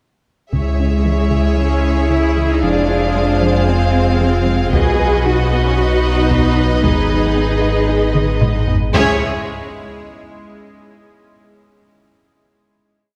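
A straight 4/4 pulse at 114 BPM drives this complete cinematic cue, a hybrid of orchestra and electronics with a vast, tense mood, moving through C#m, Fm, B and G#m before settling back on C#m for a final chord at 8.9 seconds. Taiko drums struck with hard sticks land single big, compressed and saturated strokes in the background, dropping out after the opening, returning at 4.7 seconds, and closing with a drum fill. A punchy sub bass with a pitch-drop attack holds a deep low drone, joined by a woody bowed double bass section and an expressive chamber cello section that carries a melodic bass line with portamento. Above them, a smooth violin section with light vibrato sings the melody in tremolo, a lush second violin section adds a distant line, and a viola section with portamento fills in the accompaniment, while a dark French horn section sustains slow swelling chords from afar. An evolving wavetable pad with chorus and its own reverb enters at 1.0 seconds with bright, morphing sustained chords, and a very quiet, organic, percussive wave-folded pluck pulses an arpeggiated ostinato. 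The ensemble is heard from further back in a wet scoring-stage reverb that lends the score its vast scale.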